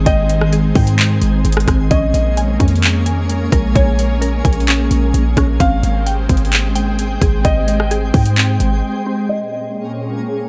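Hazy and spacious with light digital ambience, this atmospheric cloud-rap hip hop excerpt at 130 BPM in half-time, in Bb dorian, sets an ethereal, warbling pad with sidechain pumping over a deep, boomy 808-style bass and an up-front trap kit with a hard-clipped kick, metallic hats, handclaps and rim clicks, while a soft felt-muted upright piano carries the melody through delay, a crystalline wavetable pluck plays arpeggios in the background, and a twinkling granular texture sparkles beneath, until a break at 8.8 s gives way to a filter sweep from 9.3 s over a closing Bbm7.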